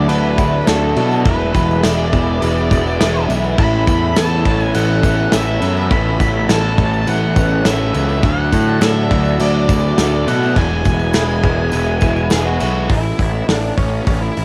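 A hazy home recording on cassette with light reverb carries this dreamy, wistful shoegaze and dream pop excerpt, moving at 103 BPM in a straight 4/4 and centred on A major. Up front, a fuzz-driven picked electric bass sits punchy and overdriven beside a loose indie drum kit from a small room, its punchy kick, medium-tuned snare, hi-hat and dark crash cymbals taped to cassette. A dark, distorted octave-fuzz lead guitar carries the melody through cassette tape and analog delay, while a swirling, detuned sawtooth pad with phaser and chorus sustains chords in the background. Beneath them, very quiet riffs from a crunchy overdriven guitar and an overdriven semi-hollow guitar mingle with bright, compressed twelve-string arpeggios and a jingly tambourine tucked close and dry at the back. The chords cycle through Dadd9, E and Aadd9 before most parts drop away at 12.9 seconds, leaving the lead guitar, bass and drums to ring out on an A5 until 14.4 seconds.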